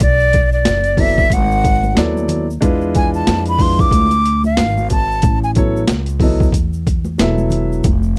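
A breathy concert flute carries the melody up front, its tongued, expressive line shaded with vibrato and lifted highs, and it falls away at 5.5 seconds in this cool, mellow jazz-hop excerpt at 92 BPM in 4/4 with a 16th-note swing. Beneath it, a gritty boom bap sampler-style kit sits forward in the mix, compressed, pitched down and overdriven, with a thumpy kick and a high-tuned snare that carry the sound of a large room. A woody upright bass played pizzicato on gut strings holds the low end, while a dark baby grand piano joins at 1.0 second with smooth, vintage accompaniment of long sustain. Ringing tube shaker and congas stay in the background. The harmony moves from Bm7 to E7b9 to Aadd9 in a dry, close recording with a 1970s studio character.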